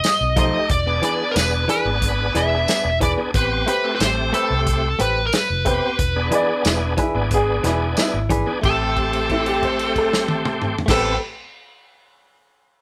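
A smooth, overdriven lead guitar sits up front in this smoky, soulful straight-eighth soul blues excerpt, carrying the melody into a held note from 8.6 to 10.9 seconds over a dry, tight-kicked acoustic kit with tambourine and toms, a dark, foam-muted fingered bass, a shouting tonewheel organ with key click, slow rotary speaker and chorus vibrato, twangy direct-recorded clean guitar stabs, and a woody upright piano that enters at 6.3 seconds with a second line, all in a moderate live-room reverb.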